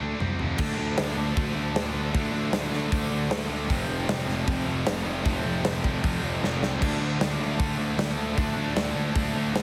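A heavily compressed, radio-like mix with light reverb carries this menacing, aggressive hard rock excerpt in D minor at 154 BPM, where a scooped high-gain guitar riff and a fuzzy picked bass start at 0.0 seconds, a big-room acoustic drum kit with punchy kick, bright cymbals and fills hits up front from 0.2 seconds, and a tight, double-tracked distorted guitar joins in the background at 0.6 seconds over chords moving from D minor to F and back.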